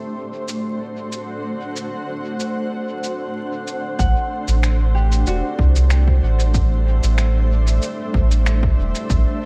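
Ambient dub at 94 BPM in A dorian, spacious and meditative, where a cloudy, detuned granular pad with built-in reverb and a ringing fingerpicked concert harp with tape echo open over vinyl crackle, muffled pitched-down cabasa and finger snaps with dub echo join at 0.5 seconds, and at 4.0 seconds a round, up-front sub bass and an overdriven punchy kick in the background arrive as the chord moves from Am to Am11 in this excerpt from a longer piece.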